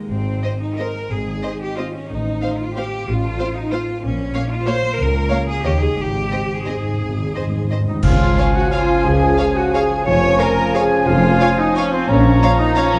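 The rich, lush viola section stands out most, carrying a close, bowed accompaniment in this elegant, sweeping orchestral ballroom waltz, which moves in a rubato 3/4 at 167-203 BPM and is cut from a longer piece. It starts in Ab major over a ringing, fingerpicked concert harp playing arpeggios, with intense cellos and a distant double bass section holding the bass, while two violin sections carry the melody and a clear second line, the warm melody violins sitting in the background. Timpani with medium mallets play a fill from 6.0 seconds. Just before the band accent, a clear oboe slips in with a second line. At 8.0 seconds, bright clash cymbals and concert bass drum strike and the music moves into Db major. From there the rest of the winds and brass join: an airy silver flute adds another second line, a bassoon holds an accompanying F3, mellow trumpets play stabs, a dark, roomy French horn section sustains chords, and a very quiet tuba reinforces the bass. 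A wet recital-hall reverb and a dark, warm production give the whole a plush, dance-floor grandeur.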